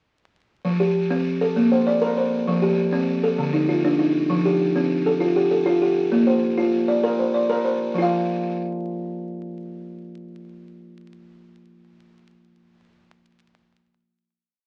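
A buzzing kalimba plays alone from 0.6 to 12.2 seconds, its woody, mellow plucks circling an interlocking ostinato in this short, rippling piece of southern African traditional music, an mbira-style cycle in F mixolydian at 131 BPM in a straight 12/8. The chords move between F, Bb and Dm before the cycle gives way at 8.0 seconds to a single ringing F5 that carries the piece to its close. The up-front instrument sits in a moderate studio reverb, heard through the crackle of a very old 78 rpm record.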